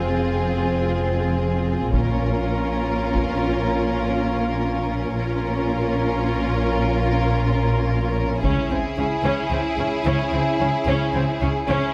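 A moderate concert hall reverb gives this cinematic, epic orchestral cue a spacious sound, with the double basses close and the horns and drums sitting farther back. At 74 BPM in a straight 12/8, this short build-up from a longer piece feels relentless and heroic, moving from F minor through B-flat minor to D-flat minor. A warm violin section carries the lush, smooth melody with vibrato, while a darker, woody second violin line and a rich, even viola accompaniment fill the middle. Beneath them, a soft-attacked cello section and an expressive, close double bass section share the bass, with the basses most up front, and a distant French horn section holds sustained chords in the background. A taiko ensemble with heavy sticks booms from a large room in two passages, at 1.9 s and again at 8.4 s.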